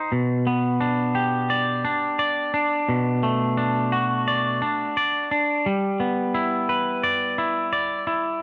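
A straight 4/4 pulse at 87 BPM gives this short rock passage an unhurried, steady stride. A single twangy electric guitar carries the whole piece, playing solo from 0.0 to 8.4 seconds and ranging from B2 up to D5. Its tone is clean and picked, sitting up front in the mix, with tape echo coloring its sound. The harmony moves through G/B, Bm7 and G6 in G major, lending the cut a cinematic, soaring mood. A moderate scoring-stage reverb with a 1.6-second tail surrounds the guitar in a spacious digital ambience, and the passage is cut from a longer piece.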